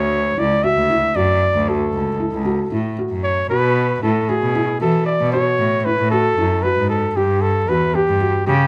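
Contemporary chamber music in a straight 7/8 at 230 BPM in eighths, hypnotic and restless, this excerpt cut from a longer piece moves from D through B5 to Em69 in the span of 8.7 seconds. A clear, punchy flugelhorn carries the solo melody up front, close-miked with light vibrato and scooped notes in a pop style, while a rich, nasal bowed cello supplies the bass with vibrato and a focused, boxy tone. Alongside them a felt-muted upright piano plays soft, dark, intimate arpeggios with audible action noise, all set in a light reverb.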